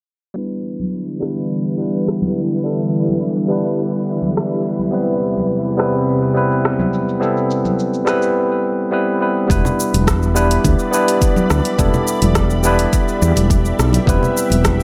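A straight 4/4 groove at 105 BPM brings in dark, produced deep house hats, rim click and shaker just after the electric piano's first notes, while soft-handed congas sit in the background. This relaxed, smooth sunset chillout piece in E minor is cut from a longer track. A barky, clean tine electric piano carries the accompaniment up front, heard through a combo amp with delay and a filter sweep running through the first 9.5 seconds. A silky, vintage string machine spreads slow-attack, long-release chords beneath it, thickened by ensemble chorus. At 9.5 seconds a deep, layered electronic kick and a growly, round fretless bass arrive, the bass sitting up front and low as the harmony moves between Em7 and Cmaj7/E. The mix is softened by light reverb and a low-pass filter.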